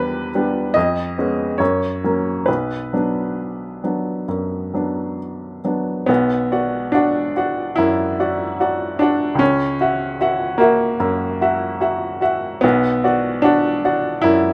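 A clear upright piano carries this short romantic character piece entirely on its own, sounding intimate and woody with the noise of its action audible under the notes. The mood is brooding and bittersweet, and the playing moves with a flexible rubato at an unhurried pace in four. The chords drift from Em7 through C#7/E# and F# before settling on Bm at 2.5 seconds, and the opening section later gives way to a second idea at 6.1 seconds. That later passage leans on F#7/C# before returning home to Bm at 12.6 seconds. The piano sits up front with a natural, short sustain, framed by light reverb, and the fragment is cut from a longer piece.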